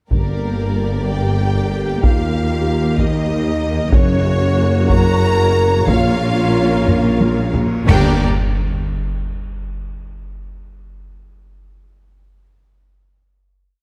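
A hard-sticked taiko ensemble drives this dark, epic orchestral film cue with a big, close and dry drum ostinato at 59-64 BPM in a straight 6/8, in G minor, moving through Gm, Eb, F# and Bbm. Two lush violin sections double the theme at the octave over tremolo violas, sustained string chords, a mellow French horn section and a low bed of dark cellos with portamento, double basses and a distant tuba, while soft-mallet timpani strike single bass notes. Cymbal swells, crashes and concert bass drum strokes join at 3.9 s, and a drum fill from 6.9 s leads to a full-band accent and a final G minor chord at 7.9 s, all in a moderate scoring-stage reverb.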